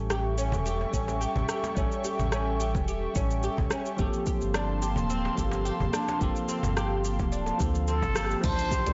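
A blown-out, overdriven sound with light reverb and a dulled top end frames this short, hypnotic cut of organic downtempo at 108 BPM in 4/4, with a gentle 16th-note swing and a meditative mood. A bell-like tine electric piano, filtered and echoed with digital delay, and an airy, breathy pad with chorus and a warbling vintage shimmer both pump against the beat, moving from A7 to Gm11. A plectrum-plucked, fretless oud adds woody arpeggios through its own delay, while a round analog bass sits dark and up front, also pumping. The tape-tinged deep house kit brings congas, hi-hat, shaker, rim click and crash, with soft clipping on the snare, joined by a softly hand-played cajon in the background and a deep, layered electronic kick from 0.9 seconds. Near the close, a close-miked trumpet with plunger mute enters at 7.9 seconds with a jazzy wah-wah line and light vibrato, and after a band accent at 8.2 seconds, a very quiet electronic impact lands at 8.4 seconds.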